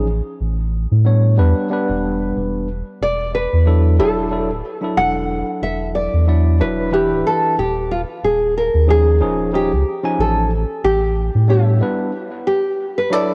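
Smooth and wistful, this short sunset chillout piece, cut from a longer work, moves with a gentle swing on the sixteenths. A bright, clean tine electric piano carries the accompaniment from the start, heard up front as if through built-in speakers, with cassette tape color, tape echo and a filter sweep running across it. Underneath, a round analog bass sets a deep, dark foundation with a fast attack and sustained notes, dropping out at 11.8 seconds for a brief break. At 3.0 seconds a fingerpicked nylon-string guitar takes the melody, its classical tone dark and acoustic, with audible finger squeaks and the same tape echo and cassette grain. Suspended ninth chords drift from A to E to D# and back to A, and light small-room reverb surrounds the whole home-recorded cassette sound.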